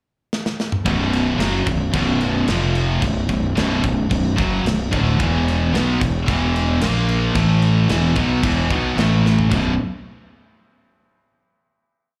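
A drum fill on the tight metal kit opens this epic, relentless heavy metal piece at 0.3 seconds, and within a second a dark, sludgy overdriven guitar in the background and a bright, high-gain guitar up front drive a power-chord riff over a growly fuzz bass that doubles it in driving eighth notes, the sound captured live through a club PA with small-room reverb until a final chord rings out from 9.5 seconds.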